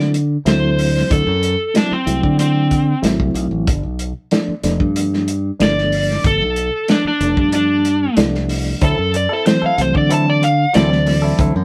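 A straight-eighth soul blues groove rolls along on a muffled, lo-fi drum kit with a tight kick and a punchy, bright fingered bass, giving this gritty, rollicking cut from a longer piece a live, one-room feel with light reverb. Up front, an overdriven slide guitar carries the melody as a solo over D9 and G9 chords, while a reedy electric piano with fast tremolo fills in the accompaniment. At 8.8 seconds, a clean, twangy, direct-recorded electric guitar adds compressed picked stabs underneath.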